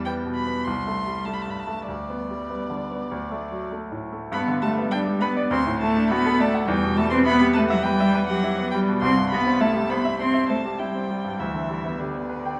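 A clear, polished concert grand piano with a deep bass sits up front, laying down the accompaniment in this quick, lively and graceful classical-period piano trio movement in G major at 101 BPM in 4/4. A single violin carries the melody from 0.1 seconds, intimate and smooth-topped with light vibrato and a soft, sul tasto bow, while a dark, closely heard cello plays a second line with vibrato. The trio sits in a wet recital hall, and a new section begins at 4.3 seconds in this cut from a longer piece.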